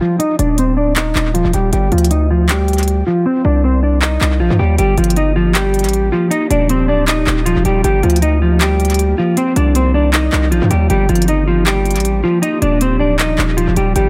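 Trap hip hop in G minor at 157 BPM with a half-time feel, this brooding, dark excerpt opens on an up-front clean electric guitar melody treated with tape echo and a filter sweep through its first 4.8 seconds, joined almost at once by a crisp-hatted trap kit with handclaps, whose hi-hats drop out from 3.3 to 4.8 seconds, and a heavy, aggressive distorted 808-style bass with a noise layer, before a glassy, ethereal FM pad with ensemble chorus settles into the background at 4.8 seconds, sustaining chords that move through Ebadd9, Cmadd9 and Gm7 in a dry, echo-heavy mix.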